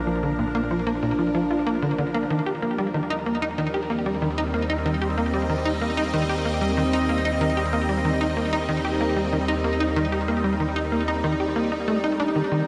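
Over a straight 4/4 pulse, this cosmic, luminous piece of sequencer-driven space music drifts in a huge, wet ambient space with a reverb tail of 7.5 seconds. A tight sequencer bass drives the riff from 0.1 seconds, its punchy sawtooth and square-wave tone sharpened by ring modulation and a fast-attack filter pluck that decays. Lush chorus, delay and shimmer reverb spread that riff out while it stays up front. An evolving wavetable pad holds sustained chords, moving from Bb to Eb6 at 2.3 seconds. Its detuned unison triangle tone morphs brightly through phaser, built-in reverb and shimmer reverb, with a slow attack and long release. Underneath, a fat analog bass sits lower in the mix, its thick, saturated sawtooth sustaining through this brief passage cut from a longer piece.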